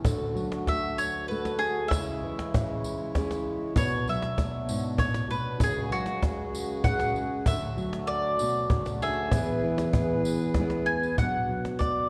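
A woody, double-strung mandolin sits up front and carries the melody, entering at 0.7 seconds and taking a solo through this pastoral, gentle passage of acoustic folk in 6/8. Beneath it, a dark, fingerpicked steel-string guitar provides accompaniment, while a hand-pumped harmonium holds reedy, breathing, airy sustained chords until 11.2 seconds. A snappy cajon with snares, also up front, keeps the pulse, and a faint tambourine adds a jingly, compressed, saturated shimmer. The harmony moves from D through C#m, Bmadd9, F#sus2/C# and back to D, then E, settling on Bm at 11.2 seconds. A wet concert hall reverb and a warm production give the small-band sound a soft glow, in a passage cut from a longer piece.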